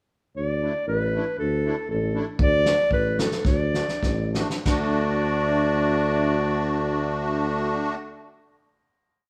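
A clarinet and tuba open together at 0.4 seconds, joined at once by a reedy, shimmering musette accordion in this bouncy, festive alpine dance band piece in D major, a short complete tune in 2/4 moving between 91 and 119 BPM. The smooth-topped clarinet carries a classical-style, motif-based melody in period phrases, the mellow tuba plays root-and-fifth bass on the main beats with light vibrato, and the close, dry accordion adds off-beat triad chords, all sitting up front in a moderate large-room reverb as if the band were playing live together. At 2.4 seconds a gritty, saturated acoustic drum kit with a fat snare and punchy kick enters with an oompah groove as the music slows, plays a fill from 3.4 seconds, and the group settles onto a final chord from 4.7 seconds.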